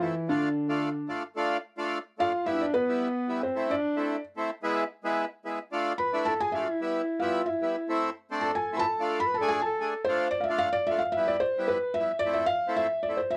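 A straight 2/4 pulse carries this soulful, bittersweet klezmer fragment, cut from a longer piece. A felt-muted upright piano takes the melody, its soft, mellow, vintage tone sitting up front and intimate, and from 1.4 seconds it steps forward as a solo. Beneath it, a clarinet in classical style plays a second line with a smooth top and a warm voice until 10.0 seconds. A reedy, full accordion holds the accompaniment throughout, airy yet rich and also close in the mix. The harmony moves through minor chords with a turn to E, and the whole has the dry, close character of a 1970s-style studio recording touched by light reverb.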